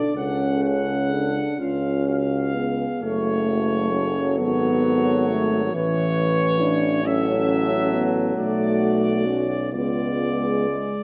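Moving in a slow, rubato 6/8 at roughly 40-46 dotted-quarter beats per minute, this hymn-like classical brass band passage in F# minor unfolds with a solemn, melancholic weight over about 11 seconds, cut from a longer piece. A bright, present trumpet section carries the melody in a tight, classical manner, while a French horn section with light vibrato and a smooth top sings a second line in the background. A close-miked, mellow euphonium with its own gentle vibrato gives the accompaniment a full, intimate core, joined at 0.1 seconds by a distant, roomy trombone. From 0.2 seconds a clear tuba with a vintage character anchors the bass. The harmony moves from F#m/C# through C#, F#m, A and Bm7 before resting on a tense C#7b9, all framed by a moderate concert hall reverb.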